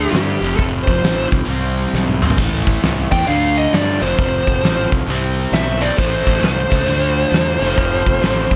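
A swung 4/4 groove at 134 BPM drives this short, heavy cut from a longer blues rock and southern rock track, with a smoky mood and a light reverb over the whole. A huge arena drum kit sits up front with a fat snare, punchy kick, hi-hat, crash and toms, and it plays a fill between 1.9 and 2.4 seconds. Underneath, a fingered electric bass growls with fuzz and overdrive, while a crunchy, double-tracked overdriven guitar picks a bright riff in the low and middle register. The dark, smooth lead guitar carries the melody up front, picked with overdrive. From 2.4 seconds a mellow, round tonewheel organ slips in very quietly behind them with sustained chords through a slow rotary speaker, as the harmony cycles through F, C, A minor and D minor.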